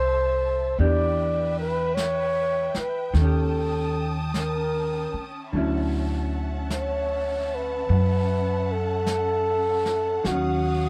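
A breathy, dark flugelhorn carries an intimate, romantic jazz ballad melody at a slow 51 BPM with a lazy swing, up front over woody pizzicato upright bass, clean picked hollow-body electric guitar and a lush bowed string section with expressive portamento, while a brushed drum kit enters at 0.8 seconds, all captured in a dry, close 1970s-style studio sound as chords move from Fmaj9 through D#7#11 to Dmaj9.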